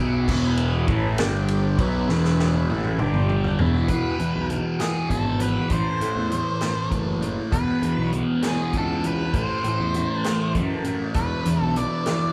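A thick, double-tracked fuzz guitar sits up front in this psychedelic rock excerpt, its phased, distorted riff running throughout at a slow 66 BPM in 6/8, counted in dotted quarters, with a kaleidoscopic, hypnotic mood. Underneath, a round, overdriven fuzz bass carries the low end, while a vintage acoustic drum kit with a punchy kick, medium-tuned snare, dusky cymbals and a rolled-off top plays crash, ride, hi-hat, snare and toms, building a fill from 2.1 s. A buzzy combo organ with light vibrato holds sustained chords in the background over the opening, then drops out. At 3.9 s a dark, octave-fuzz lead guitar enters with the melody, and the harmony shifts from E and G5 toward A minor and E5. The organ returns at 11.2 s under a closing E7sus4, and the whole band sounds as if playing live together in one large studio room with moderate reverb.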